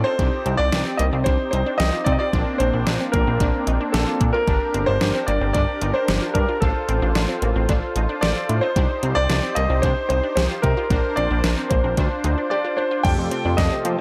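An echo-heavy mix with moderate spring reverb frames this cool, melancholic synth-pop excerpt, where a clear, polished baby grand piano carries the melody over bold, fat analog synth brass, squelchy resonant blip-pluck arpeggios in the background, and a glossy, nasal chorused synth bass up front, while a knocking, overdriven pop drum kit enters at 0.2 s and a shimmering chorused pulse-width pad joins at 13.0 s as the chords move from Cm through Bbadd9 and Gm toward Fadd9.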